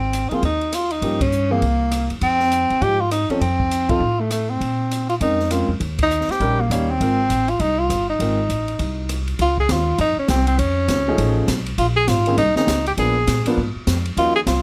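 A tenor saxophone and plucked upright bass open this relaxed, swinging small-group jazz piece at 201 BPM in Ab major, with the drum kit joining almost at once. The saxophone carries the melody up front, its smooth top, light vibrato and scooped notes giving it a relaxed, singing character, while the woody, thumpy bass plays beneath it. The drums sit further back in the mix, mixing dark cymbals on hi-hat and ride with a high-tuned snare, rim clicks and a boomy kick, and the band hits a few shared accents early on. A warm grand piano comps from 0.3 seconds with deep bass notes and long sustain, falls silent at 8.4 seconds, and returns at 11.1 seconds, after the harmony has moved at 9.4 seconds to a new section built on Dbmaj7, F7alt and Bbm11. Light reverb adds a touch of space to the studio sound, and the passage is cut from a longer piece.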